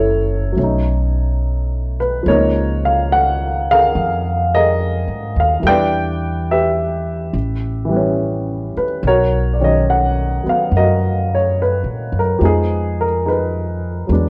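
A dark, mellow baby grand piano with audible action noise and short sustain provides the accompaniment in this smoky, melancholic jazz ballad fragment at 71 BPM with a gentle swing, moving through rich chords such as Gbm7, Db69 and Bmaj9 over a woody, plucked upright bass, both sitting up front in a moderate studio reverb and colored by the warbly pitch drift of worn cassette tape.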